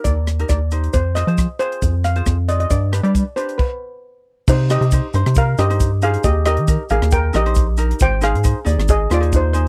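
Calypso excerpt at 136 BPM in C minor with a tense, driving mood, where a shimmering, metallic steel pan carries the melody up front over lightly fingerpicked acoustic ukulele, a rubbery, hollow square-wave bass with a dark filter pluck entering at 0.1 seconds, a tight funk drum kit with bright cymbals and rim clicks, and a grainy tube shaker in the background, with a stop from 3.6 to 4.5 seconds before the second section, all in a close 1970s-style studio sound with little reverb.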